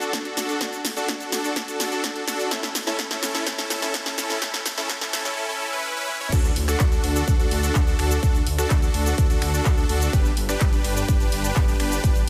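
Huge, lush supersaw chords pump with sidechain and digital delay under a filter sweep, while a layered big-room drum kit of cabasa, crash, finger snaps, handclaps, hi-hat, snare and toms rolls through a fill and an up-front punchy electronic kick drives this anthemic, triumphant festival progressive house excerpt, building until the drop at 6.3 seconds brings in a thick, saturated detuned saw bass with chorus and sidechain pumping.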